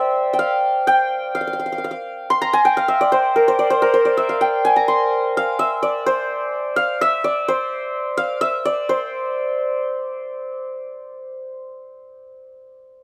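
A solo santur carries this short devotional passage of Indian classical music, its bright, shimmering hammered strings ringing up front in a light reverb. The piece is set in raga Charukeshi on C, moving in a straight 4/4 at 128 BPM, with the tuning sitting at A4 = 437 Hz. The santur ranges from Bb4 to C6, keeping its voice high and radiant across the whole 12.2 seconds. A first section runs to 8.9 seconds before a brief contrasting passage takes over until 10.7 seconds. Cut from a longer piece, the fragment has a glowing, prayerful character that rests entirely on the acoustic sparkle of the single instrument.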